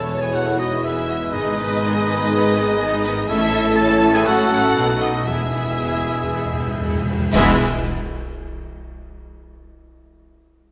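A stormy, dramatic classical passage for full symphony orchestra in E major, moving at a fast 120 BPM with uneven beats. An intense, vibrato-rich violin section carries the melody, joined by a clear vintage-toned oboe, while an airy flute ensemble, a clarinet and a smooth second violin section add inner lines over a distant viola section, mellow French horns, very quiet trombones, trumpet stabs, a ringing fingerpicked harp and a lush bowed bass of rich cellos and bright double basses. Dark cymbals and concert bass drum come in at 3.3 seconds, round soft-mallet timpani play a fill from 5.3 seconds into a full-band accent at 7.3 seconds, and the harp rings on to the end, all set in a reverberant recital hall.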